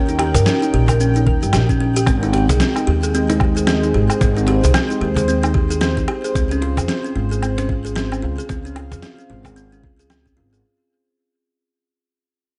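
Dark, softly reverberant production frames this short cut from an earthy organic downtempo piece at 112 BPM in 4/4, its sixteenths swung, moving through Eb7, Abmaj7 and Dbmaj7 before fading out from 4.9 seconds. A woody pizzicato upright bass with gut-string thump and a bright, hollow kalimba playing short delayed arpeggios sit up front, while a smooth sawtooth-and-triangle analog pad with a sub octave, chorus and sidechain pumping holds slow-attack chords underneath. Gritty, overdriven sampler-style cabasa, woodblock and snare are joined by a snappy cajon in the background, and a compressed, thumpy electronic kick arrives at 1.3 seconds.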